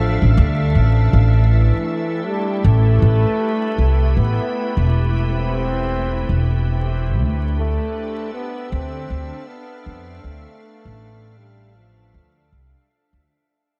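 Echo-heavy and lightly reverberant with a layer of vinyl crackle, this spacious, hazy ambient dub fragment sits at 79 BPM in a swung 4/4 and fades out from 1.1 seconds across its length, moving from Dm to Am7 and back to Dm. A growly, woody pizzicato upright bass sits up front, while a calm, organ-like pad holds sustained chords softened by ensemble chorus and its own reverb. A mellow trombone with light vibrato carries the solo melody through dub echo until it drops away at 12.5 seconds.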